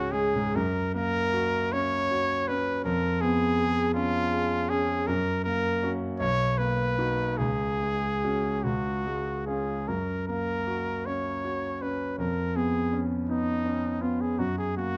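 Romantic classical music for trumpet and grand piano, lyrical and serene in a rubato 6/8, with a clear, softly attacked trumpet carrying the melody with light vibrato up front while a brilliant concert grand supplies accompaniment rich in deep bass and long sustain, all set in a moderate studio reverb with a dark overall production.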